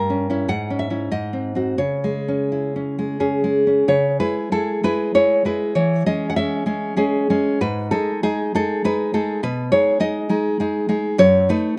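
A fingerpicked nylon-string guitar sits up front with a deep classical tone and a touch of slapback echo, playing a sunny yet tender romantic solo in C# minor, tuned to A4 = 444 Hz, that sways in rubato 3/4 at roughly 83-105 BPM, moving from C#m through G#7 before a new section opens at 3.9 s and drifts toward F#m6 in this short, dry outdoor cut from a longer piece.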